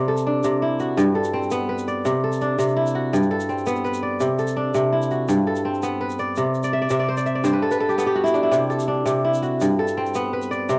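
A ringing, fingerpicked kora opens at 0.0 seconds, spinning crisp arpeggios that span G2 to E5, sitting up front and carrying a cassette-tape character. A grainy tube shaker joins at 0.2 seconds, its compressed, saturated sound tucked well beneath the strings. This joyful, warm slice of West African traditional string music moves at 111 BPM in 12/8, counted in dotted quarters, and rests in C lydian. The harmony sways between C and G, briefly colored by a Cadd9 in the second section, where the kora breaks into a fill at 6.6 seconds. A wet studio reverb gives the homespun recording a small sense of room, and the passage is cut from a longer piece.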